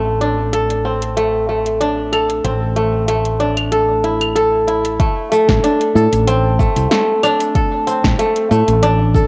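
Mystical and earthy, this organic downtempo excerpt at 94 BPM in A minor, with a light 16th-note swing, sets crisp, ringing fingerpicked kora arpeggios, up front with cassette tape and tape echo and a filter sweep until 5.0 seconds, over a round, dark fretless bass with sidechain pumping and an overdriven deep house kit of claves, shaker, metallic hats and punchy snare, joined at 5.0 seconds by a deep, tape-warm electronic kick, all sitting in light digital ambience on a home cassette recording over a single A minor chord.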